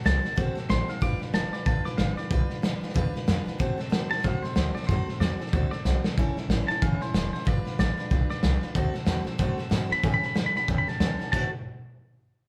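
A picked steel-string acoustic guitar opens this upbeat, retro rockabilly excerpt, joined almost at once by a twangy, clean electric guitar carrying the melody, a woody, thumpy pizzicato upright bass and a vintage drum kit, all playing live together in one room at 186 BPM with a 60% swing on the eighths in D mixolydian. The drums sit up front with a punchy kick and dark, gritty, muffled cymbals, while the jumbo acoustic stays full-bodied beneath the bright, compressed lead as the changes move through D7, G7 and A7. A drum fill arrives at 5.9 seconds, and light reverb surrounds the band.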